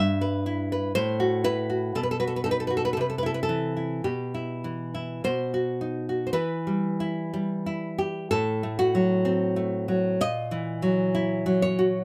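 A fingerpicked, full-bodied nylon-string guitar plays alone and up front in this melancholic, passionate romantic piece, excerpted from a longer work, moving with a free rubato in 2/4 through chords such as Em/G, F#m7b5/A, B and C before a second section begins at 6.3 seconds on Em and darkens toward F#dim/A and F#7/A#, all captured by close, detailed microphones with light reverb.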